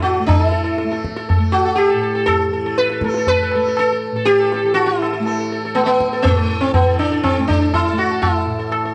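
A dark, intimate small-room sound frames this short, solemn cut from a longer Hindustani classical performance in raga Kafi on A, moving at 121 BPM in a straight 4/4. The sitar carries the melody up front throughout its 8.9 seconds. Its plectrum-plucked tone buzzes and shimmers with sympathetic strings, set in a plate reverb and ranging from A3 to B4. Beneath it, the tanpura sits far back as a softly plucked drone between A2 and A3, its glowing, buzzing resonance sustaining the introspective mood. The tabla plays along the whole way, tuned high with a ringing, compressed and saturated edge that sits between the other two parts in level. The overall effect is inward and meditative, with the sitar's glittering line floating over a warm, resonant foundation.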